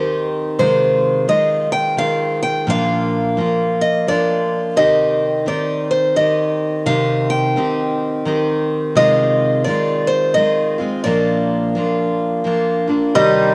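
Wistful and haunting, this acoustic folk piece for a duo or small band moves at 86 BPM in a lilting, swung 3/4, tuned slightly below standard pitch. A picked archtop guitar carries the melody in a bright, boxy voice with audible finger squeak, while a dark, full-bodied steel-string dreadnought supplies the picked accompaniment, both sitting up front for the full 13.5 seconds. The harmony circles through C minor, Ab6 over C and Bb, returning to C minor at 4.8 seconds. Near the close, a reedy, breathing harmonium enters at 13.1 seconds with sustained chords, and a woody, polished upright piano follows at 13.2 seconds with arpeggios on a single G. A moderate plate reverb lends the room a lingering tail, and the recording is cut from a longer piece.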